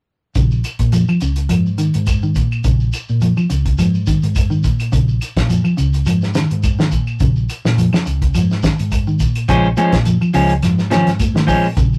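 A driving, defiant afrobeat groove at 105 BPM with a light sixteenth-note swing sits on a single Bbm7 chord in Bb minor, where a damped 70s drum kit with a fat snare and tight kick leads from the front, a round hollow-body bass grounds the low end, a dark, clean electric guitar plays arpeggios, grainy shekere and woody, saturated claves fill out the percussion, and at 9.5 seconds a slightly broken-up electric guitar cuts in with up-front stabs while ringing, high-tuned congas sit in the background, all in a rough rehearsal-room recording with short booth ambience.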